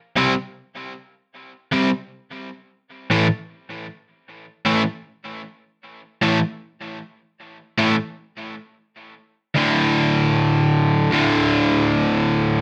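A crunchy, overdriven electric guitar opens this short punk fragment at 0.2 s with a C5 power chord, picked and placed up front. It plays alone in free time, with a bright, double-tracked tone that thickens the sound and a touch of delay trailing each stroke. The harmony moves to A5 at 3.1 s, and the part spans D2 to C4 in the guitar's lower and middle register. At 9.5 s the music shifts into a new section on a D5 chord, which carries on until the clip breaks off. A moderate studio reverb gives the room a short, tight tail, and the mood stays rebellious and rowdy throughout.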